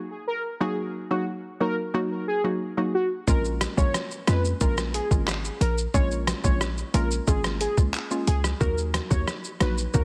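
A muffled, pitched-down trip hop sampler-style drum kit with a thumpy kick, handclaps, hi-hat, rim click and shaker arrives at 3.3 seconds alongside a punchy, tight 808-style bass, driving this tough, bouncy dancehall clip as a velvety, vibrato-tinged synth lead carries the melody with chorus and digital delay over a hollow, detuned square-wave pluck that pumps with sidechain, all pressed into a heavily compressed, radio-like sound.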